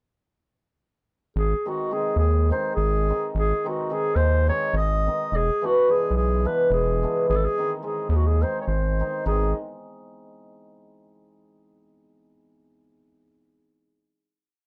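Balkan folk in a fiery, virtuosic 7/8 at 213 BPM, this short whole piece opens at 1.4 seconds with a dark, soft-attacked classical-style clarinet spinning hook-like motifs over an aggressive, saturated synth bass of square, sawtooth and oscillator-sync tones that plants roots and fifths on the main beats, while a shimmering, hammered cimbalom joins at 1.7 seconds with close-voiced off-beat chords moving from G# to E7 and back before a final chord arrives at 9.3 seconds, all in a dry, close, detailed recording.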